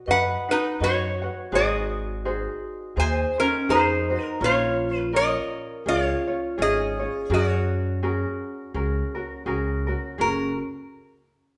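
A nasal, metallic resonator slide guitar played with fingerpicks carries the melody up front in this languid, sunny Hawaiian excerpt at 83 BPM in F# major, swinging gently in 4/4. Behind it, a ringing vibraphone struck with medium hard mallets, motor off, adds a boxy second line in the background, while a mellow ukulele picks out light fingerpicked accompaniment and a woody pizzicato upright bass with steel strings sits up front from 0.1 seconds. The chords move from B through G#7, A#m and C# to F#add9, all bathed in a wet recital hall reverb.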